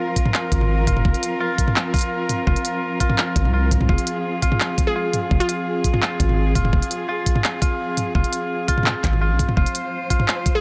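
A dark, woody cello section and a bright, twangy clean electric guitar open this cinematic, heavy half-time drum and bass excerpt in F minor at 169 BPM. The bowed cellos hold sustained chords with vibrato and a sidechain pump, while the picked guitar plays delayed arpeggios around F4 over a single Fm harmony. At 0.2 seconds a knocking electronic kick and an industrial drum kit arrive, the kit's crisp hats, handclaps and toms sitting up front with a tape-tinged edge in a small room. A deep, sine-like 808-style bass follows at 0.5 seconds, its long decaying notes anchoring the low end up front. A glassy, crystalline wavetable pluck appears briefly near 4.9 seconds, detuned and doubled by a sub octave, with chorus, cassette-tape colour, digital delay and a filter sweep. The digital ambience keeps the top end soft.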